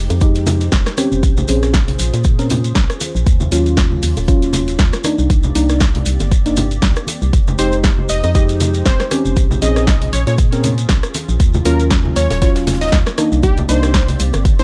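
Deep house at 118 BPM in F minor with a moody, swung 4/4 groove, where a punchy electronic kick and bright-hatted house kit drive ringing, soft-handed bongos and congas, a grainy shekere and a very quiet airy acoustic kit under a dark, organ-like FM bass, full-bodied nasal chord stabs with 12-bit grit and tape echo, and a hollow, flute-like pad pumping through Fm9, Bbm9, Ebm9 and Cm9, before a catchy detuned unison lead with tape echo enters at 7.6 seconds, all set in a dry, gritty small room with vinyl crackle.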